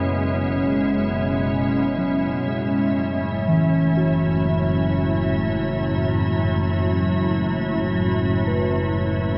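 A bright, organ-like pad sits up front with sustained, warbling, detuned chords from the very start, while muted, felt-like synth keys trace intimate arpeggios with chorus and tape echo in the background and a bowed double bass section holds a low F#1 with smooth vibrato, shaping a reflective, spacious ambient excerpt steeped in a dark concert-hall reverb.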